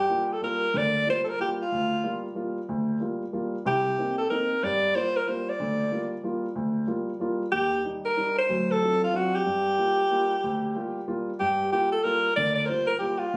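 Captured on a phone in a roomy studio with a large reverb and compression, this cool, late-night jazz fragment swings in 3/4 at 186 BPM in G minor, with a clear, breathy alto saxophone up front carrying the melody with light vibrato and a soft attack over a dark, mellow grand piano that comps through Gm7, Cm7, Ebmaj7 and a tense D7#9 before settling back on Gm7.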